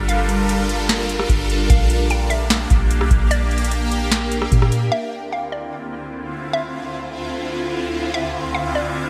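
A half-time 4/4 groove at 149 BPM drives this hazy, spacious cloud-rap excerpt in D minor, where a booming analog drum machine with deep kick, crisp snare, metallic hats and gated reverb joins a soft, round 808-style bass until 4.9 seconds, while throughout a shimmering, ethereal pad with chorus, phaser and sidechain pumping sustains Gm9, Bb6 and then Dm9 chords beneath a hollow, bouncy square pluck melody with digital delay, all set in a lush hall and bright 1980s-style digital production.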